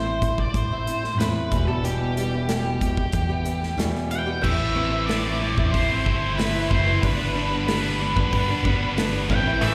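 A fuzzy, octave-doubled lead guitar carries the melody over boxy, finger-squeaking acoustic arpeggios with a swing lilt and a round, dark fingered bass, with a punchy rock kit of bright cymbals joining at 0.2 seconds in this brooding, angsty quiet-loud alternative rock piece in A minor at 93 BPM. The two guitars share slapback echo and analog delay, and the harmony moves through Amadd9, Em and G. A scooped, high-gain electric riff arrives at 4.4 seconds, and a tight, up-front distorted guitar cuts in at 9.6 seconds, all heard as a live gig through the venue's PA with recital hall reverb.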